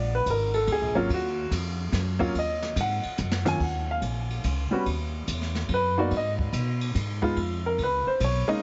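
Heavily compressed and dulled like an old radio broadcast, with the top end shaved off and a light reverb around it, this short excerpt from a longer jazz piano trio piece sets a smoky, cool mood. It moves in a swinging three-four lilt, with a minor-key harmony passing through chords such as Ebmadd9, Abm and Db9. The baby grand piano, warm, natural and up front, takes a solo across the whole clip, spanning from deep in the bass register up into its upper middle range. Beneath it, the pizzicato upright bass sits close and sounds woody and thumpy on steel strings. The brush drum kit comes in at 0.3 seconds a little further back, with dark cymbals, a medium-tuned snare and a boomy kick, and it plays a brief fill from 3.2 seconds that leads into a repeat of the opening section at 3.6 seconds.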